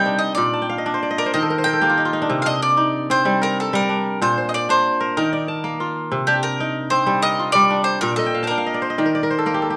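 West African traditional music in a reflective, flowing 12/8 at 126 BPM in C dorian, cut from a longer piece. A woody, picked mandolin on double strings carries the melody and takes a solo over the first 2.3 seconds, while a bright, crisp fingerpicked kora rings out in arpeggios and adds fills, the last arriving at 8.2 seconds. Both acoustic instruments sit up front in a moderate recital-hall reverb, moving through Bb, Eb and Cm chords.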